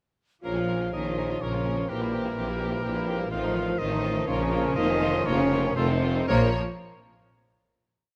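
In a lilting 3/4, this brief, whimsical film cue has a sneaky, magical air: lush violins carry the tune over a second violin line while a clear oboe, hollow, airy flutes and a mellow clarinet add their own lines; a bassoon, very quiet violas rocking a two-note figure and a background French horn section fill in sustained harmony; and cellos, bowed double basses and a distant tuba anchor the bass before the full ensemble settles on a closing chord at 6.3 s.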